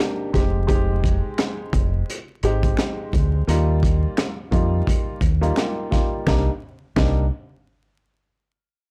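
Tough and gritty, this short boom-bap hip-hop cut in C minor rides a swung 86 BPM groove, with a crunchy, saturated breakbeat kit of punchy kick, high-tuned snare, rim click and hi-hat up front, a round, deep dub fingered electric bass thickened by tube saturation, a dark, woody upright piano filtered through cassette tape with audible action noise, and close finger snaps sitting in the background from 1.4 seconds, set in a dry recording with vinyl crackle and faint mains hum as the chords move from Fm7 to Ebadd9 to Cm7.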